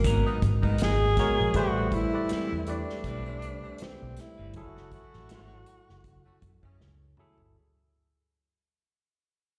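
A lightly swung 80 BPM groove in 4/4 carries this sultry, soulful neo-soul R&B excerpt, fading out from the start, with an acoustic drum kit played with bundle sticks and a round, foam-muted fingered electric bass up front beneath chords moving from G#m9 to Am9 and F#m9. A breathy, whispered tenor saxophone leads with scooped notes, vibrato and slapback echo, while a barky tine electric piano supplies accompaniment, a clean semi-hollow guitar with subtle chorus adds a second line, and a background saxophone section enters with stabs at 0.2 seconds. The band sounds like a live gig heard through a venue's PA in recital-hall reverb, closing with a drum fill at 6.8 seconds.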